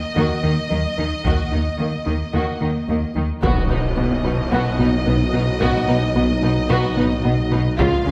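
A vast, relentless hybrid orchestral and electronic film score cue, in which a lush, expressive violin section carries the melody over a tight sequenced synth arpeggio, a rubbery, hollow square-wave bass riff, and darker background violins and violas with rich cellos and very quiet double basses. Hard-stick taiko drums join at 1.3 seconds, and at 3.4 seconds mellow French horn chords, a menacing, swelling detuned saw bass and a huge, bright impact arrive, with the whole ensemble set in a wet scoring-stage reverb.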